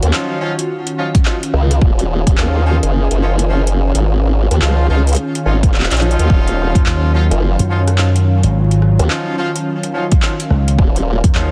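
Over a dense, heavily limited modern master dusted with vinyl crackle and digital ambience, this funky, playful glitch hop cut from a longer piece swings its 16ths at 107 BPM in Eb minor on an Ebm9 chord: a detuned sawtooth analog pad holds smooth, chorused chords with sidechain pumping, an up-front formant-sweep wobble bass wobbles with detuned pulse and sine tones, an overdriven pop drum kit brings handclaps, metallic hi-hats and rim clicks, a clear horn section punches tight octave-doubled stabs through digital delay, a punchy overdriven electronic kick enters at 1.1 seconds, and a bright, amped slap bass with an envelope filter joins at 6.8 seconds.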